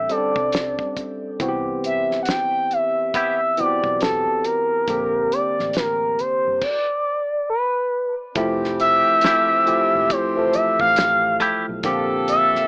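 An expressive synth lead sits up front, its smooth, sawtooth-and-triangle tone carrying the melody with a soft attack, sustained notes, vibrato and a chorus sheen in this sensual, smooth slice of neo-soul R&B at 69 BPM, swung on the sixteenths. Beneath it a barky tine electric piano, clean through a combo amp with a subtle chorus, plays chords moving from a rootless Bbmaj13 to Cmaj7, while a dark, round, foam-muted fingered bass sits in the background and a cloth-damped, thuddy kit keeps time with a fat snare, tight kick, hi-hat and dark crash. A twangy, compressed electric guitar with tremolo adds a picked second line, a brief flicker at 3.1 seconds and then a longer phrase from 9.2 seconds. At 8.4 seconds the harmony shifts to Fmaj9 and a tight, present jazz-style horn section enters with stabs, carrying through to the close on Bb69. The whole piece has a light reverb and an AM-radio character that gives it a vintage intimacy.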